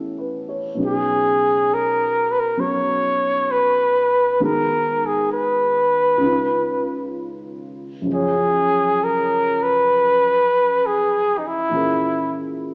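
Jazz at a slow, swung 66 BPM, this wistful, intimate excerpt sets a breathy, whispered trumpet with vibrato up front over a dark, woody, slightly detuned, vintage upright piano that plays from 0.0 to 12.7 s, with the trumpet entering at 0.9 s, moving through chords such as A9, G#m7 and F#sus2, all heard from further back in a wet echo chamber with a small-speaker sound.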